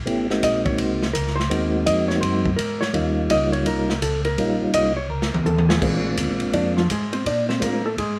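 Soul jazz organ trio, soulful and bluesy, swinging at 167 BPM in 4/4 with a swung eighth-note feel. A mellow tonewheel organ carries the bass line, its round, dark tone colored by chorus vibrato, audible key click and a slow rotary speaker. Up front, a second tonewheel organ sings the melody in a soft, flute-like voice with second-harmonic percussion, chorus vibrato and the same slow rotary swirl. A hollow-body electric jazz guitar takes a solo across the whole passage, its dark, clean, fingered tone tightly compressed, while the acoustic drum kit swings with dark cymbals, a medium-tuned snare and a punchy kick, adding a fill between 5.1 and 5.8 seconds. The harmony moves from Ab7 to Eb7 to Bb7 in light reverb, and the passage is cut from a longer piece.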